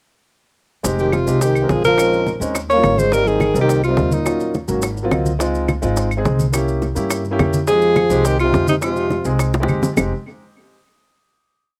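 Dry, with little reverb and an open-air feel, this fiery, sophisticated Afro-Cuban jazz piece sets a clear, present alto saxophone with vibrato on a free-flowing melody beside a breathy, whispered trombone playing a harmony line mostly in thirds; both enter at 1.0 s and return at 7.7 s. Beneath them, a dark, thumpy gut-string upright bass plays a tumbao that anticipates the chords, while a grand piano with audible action noise and slapback echo adds syncopated rootless stabs and a brief fill at 5.0 s. Round, low-tuned bongos in steady eighths, thick-skinned congas in the background, woody claves on a two-bar time line and grainy maracas drive the rich, jazzy harmony to a final held chord.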